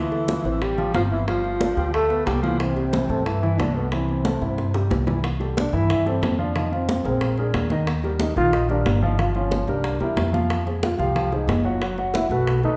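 A breathy, smooth-topped trombone with light vibrato carries the melody through this lively, sunny Afro-Cuban jazz excerpt in C major at 182 BPM, joined until 4.9 s by a whispered, mellow tenor saxophone on a second line with scooped notes and a soft attack. Beneath them a dark grand piano accompanies, a woody pizzicato upright bass sits up front, and close, ringing, high-tuned congas struck with hard hands sound alongside tight bongos. A drum fill at 4.6 s leads into a new section where the chords shift toward Fm and Ebmaj7, and the recording is heard from further back in a large, wet studio reverb.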